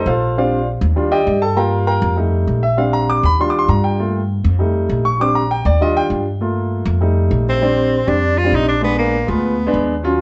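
Lively and sophisticated, this brief Afro-Cuban jazz cut moves at a brisk 199 BPM in 4/4 in Bb major, with a concert grand piano taking a solo passage over a repeating Bb6/9, Ebmaj7, Gm7, F7 cycle while a woody, growly pizzicato upright bass carries the low end throughout. At 7.5 seconds a tenor saxophone enters with a jazz-style solo, warm and smooth on top, with subtone, vibrato and scooped notes, as the harmony settles on Bb6/9 and then a Bb7b9 at 8.8 seconds. The deep-bassed, natural piano and the other parts sit up front, yet a moderate club reverb places the whole band further back in the room with a softly rolled-off top.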